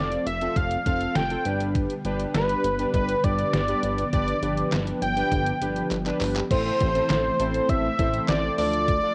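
A melancholic, nocturnal synth-pop passage at 101 BPM opens with an up-front, octave-doubled lead carrying the melody, bright and warbling with chorus and vibrato on its sawtooth and triangle tone. Beneath it, analog synth brass plays a fat, dark, detuned accompaniment with a filter sweep and a cassette-tape color. A string machine set to cellos sits in the background, holding full-bodied, soft-attack chords thickened by ensemble chorus and a sub octave. A glossy, nasal chorused synth bass with a filter pluck anchors the low end, while a detuned 8-bit drum machine, up front with a thumpy kick, medium-tuned snare, handclaps, hi-hat and crash, drives a straight 4/4 feel. The harmony moves from F to G, and a drum fill at 5.9 seconds leads into a new section at 6.5 seconds that turns to A minor and then D minor, all wrapped in light reverb and the hazy character of a home cassette recording.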